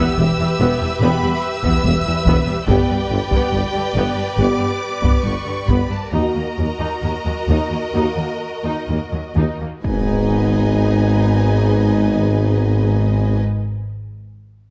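Cinematic, epic orchestral film score in G# minor at 61-72 BPM, dramatic and epic, cut from a longer piece, where a clear, intense violin section carries the high bowed melody over a warm second violin line, smooth violas, rich cellos, a woody, close double bass section and a clear, vintage tuba in the background, as mellow French horns enter at 1.0 seconds with sustained chords, a taiko ensemble with hard sticks plays in a live room from 1.6 to 6.5 seconds while the tempo slows, and a huge, bright impact lands at 9.8 seconds as the harmony moves from Em through G and D#m to G#m, all in light reverb.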